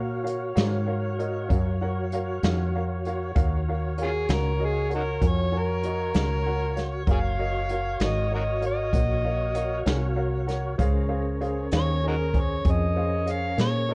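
An overdriven, gritty harmonica takes the solo melody from 4.0 seconds, up front with light vibrato, scooped notes and tongue slaps in a brooding, smoky slow blues in 12/8, cut from a longer piece. Beneath it, a woody fretless electric bass with lush chorus and a brushed jazz kit with a boomy kick and vintage sampler grit carry the groove, while a polished upright piano comps and a tonewheel organ with key click and slow rotary speaker holds chords over Ebm9 moving to Bbm9 at 10.8 seconds. A punchy, bright horn section sits in the background, and the dry recording carries the worn, warbling pitch drift of old cassette tape.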